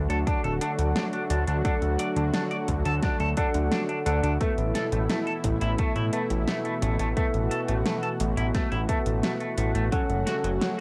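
Dreamy and uplifting, this short synthwave cut from a longer piece sets a lush, warbling unison pad with chorus and sidechain pumping against a fat, detuned sawtooth bass up front, clean electric piano stabs through a combo amp with tape echo, a bright, twangy guitar riff with analog delay, and overdriven electronic drums with a punchy kick, fat snare and metallic hats, all moving from D to Asus2 to F#m in light reverb with the character of a home cassette recording.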